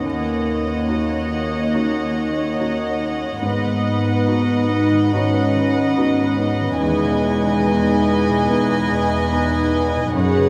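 Opening on a dark, distant French horn section holding sustained chords over a rich, soft-attack cello bass, with woody, vibrato-laden violas, a pure sul tasto violin line, a smooth vintage grand piano in the background and ringing thumb-plucked harp arpeggios, this sorrowful, bittersweet cinematic orchestral score moves rubato at 71 BPM through D#m7, G#m7 and Emaj7 as a close, floating violin melody enters at 0.1 s, the whole ensemble set in a vast, echoing cathedral space.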